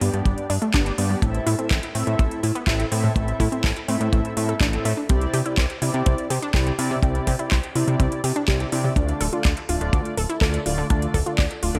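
Melodramatic and danceable, this short italo disco cut from a longer piece moves at 124 BPM in A minor, with a lush, wave-folded unison pluck spinning arpeggios and a round, chorused synth brass punching out stabs over a chord run of G, Am, Cadd9 and Dm. Beneath them a fat, detuned analog bass with tube saturation and ring modulation holds the low end, while a house kit of metallic, overdriven hi-hats and handclaps, re-recorded in a large room, rides along. A tight, dry kick sits up front from 0.3 to 11.5 seconds, and a light reverb gently opens the sound.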